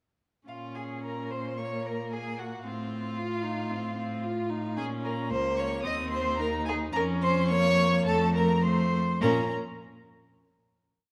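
Restless and stormy, this brief, complete classical-period movement for string quartet moves at a quick 109 BPM in 4/4 with a rubato feel, set in Bb minor and closing on a Bb minor chord at 9.2 seconds. A distant, rich first violin carries the bowed melody with smooth vibrato, while the second violin sits up front doubling the tune at the octave. Beneath them a close, clear viola weaves independent inner lines and sustained chords, and an up-front cello with a focused tone and smooth top holds a sustained bass with passing notes, all in a dark, warm production with moderate recital-hall reverb.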